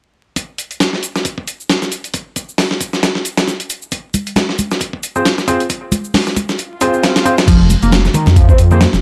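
Breakbeat with an energetic, funky feel at 135 BPM in F minor, built on a gritty, up-front sampler-style drum kit with a thumpy kick, compressed and re-recorded in a small room, while a tape-warm shaker sits in the background and bright, dry congas with hard hands join at 4.1 seconds. Stabs from a present baby grand piano with tape echo arrive at 5.2 seconds, and a very quiet electronic swell leads into the second section at 7.5 seconds. There, a thick, menacing detuned saw bass with tube saturation enters alongside a screaming, guitar-like overdriven synth lead riff with phaser, lush chorus, vibrato and tape echo, all under a layer of vinyl crackle in a dry mix.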